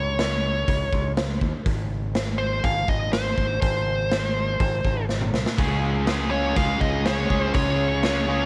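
A straight 4/4 classic rock groove at 122 BPM in Db major carries this sunny, confident excerpt, where a nasal, picked lead guitar with a parked wah sings its melody over a growling fingered bass with bright overdrive and a raw, gritty garage drum kit with a punchy kick in a pumping stone room, until a drum fill at 5.1 seconds ushers in a crunchy, double-tracked overdriven guitar riff at 5.6 seconds as the chords move from Ab to Db, all set in light small-room reverb.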